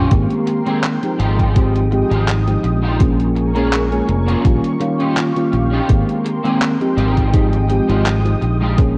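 Hazy and woozy, this vaporwave excerpt drifts at 83 BPM with a light swing, moving through Abmaj9, Bbm7 and Eb9/Bb before settling back on Abmaj9. A thick, detuned sawtooth pad with chorus and phaser holds bright sustained chords, while a twangy, slightly broken-up electric guitar riff carries ensemble chorus, 12-bit sampler grit and analog delay, and a round, dark FM electric piano with subtle chorus sits up front beside a fingered electric bass. A thumpy electronic kick anchors detuned 8-bit handclaps and hi-hat, all bathed in light reverb, digital ambience and the echo-heavy haze of cassette tape.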